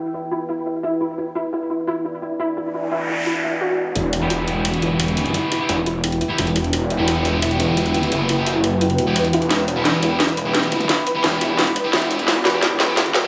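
Dark technical drum and bass at 173 BPM in E minor, futuristic and moody, opens on a deep background pad of sustained chords with a soft, round filtered pluck arpeggio carrying dub echo, a noise sweep rising at 2.8 seconds before a snarling, growling distorted saw bass and an up-front electronic kit with a cracking snare and metallic hats arrive at 4.0 seconds, joined by thick, double-tracked fuzz guitar stabs with 12-bit grit as the section builds toward a drum fill from 9.5 seconds under a plate-reverb sheen.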